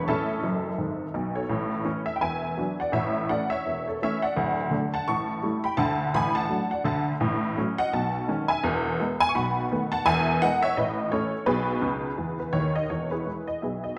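A swinging 4/4 lilt drives this playful stride-jazz passage, cut from a longer piece, where a lone detuned, jangly honky-tonk upright piano sits up front, ranging from D1 up to C#6, dropping fills at 0.4 and 11.8 seconds as its chords shift toward E major at 7.2 seconds inside the lingering bloom of a recital-hall reverb.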